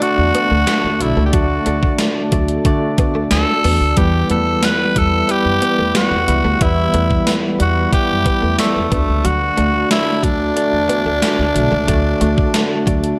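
This glossy, nostalgic 1980s-style pop excerpt in D major at 91 BPM opens with a raspy, gritty tenor saxophone carrying the melody up front over a gated drum machine with a thumpy kick and gated reverb snare, while a tine electric piano with medium tremolo comps through a combo amp. An upright bass enters at 0.2 seconds with a woody, growly pizzicato line, a very quiet clean electric guitar picks a compressed riff, and a glassy, ethereal FM pad with slow attack and ensemble chorus sustains chords beneath. The harmony moves from D to Em at 4.0 seconds and back to D at 8.9 seconds, all set in light reverb.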